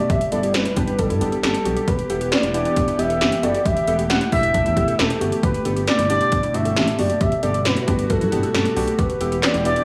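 A small digital room colours this luminous, nostalgic synth-pop excerpt at 135 BPM in G major, moving between Gadd9 and Em while an expressive sawtooth lead with vibrato, chorus and analog delay carries the melody over soft, round electric-piano-like keys and a swirling phased pad in the background. Up front, punchy 80s electronic drums with a gated snare, metallic hats and handclaps join at 0.1 s alongside a smooth, gliding bass with portamento. A warbly, lo-fi pluck spins dusty arpeggios through analog delay behind it all.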